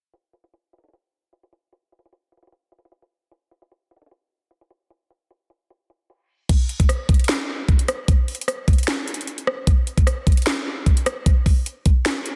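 Dark and melancholic, this hip hop excerpt moves at 151 BPM in 4/4 with a half-time feel, carried entirely by an electronic trap drum kit sitting up front from 0.1 to 12.4 seconds. A knocking kick, sharp snare with soft clipping, metallic hi-hats, rim clicks and crash cymbal make up the kit, and a filter sweep runs through the opening section until the music shifts into a new section at 6.5 seconds. Light reverb and a low-pass filter shade the sound, and the dense, heavily limited modern master keeps it tight.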